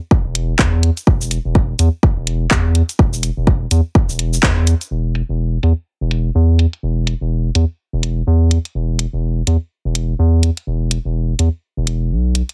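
Minimal techno with a quirky, cool mood, cut from a longer piece and set in a steady 4/4 with a swung sixteenth-note feel. A punchy, layered electronic kick sits up front with a warm tape character and the sound of being re-recorded in a small room, but it drops out at 4.5 seconds. Under it, a round, deep analog bass with a dark, sustained sine-like tone and a fast attack pumps against the sidechain and carries on to the end. A house drum kit of handclaps, hi-hat and shaker, also layered and close, is muffled by low-pass filtering on its hats, percussion, snare and room sound. The whole band hits an accent at 4.4 seconds just before the groove shifts into its second part, and the mix stays dry and squeezed by heavy multiband compression into a radio-like sound.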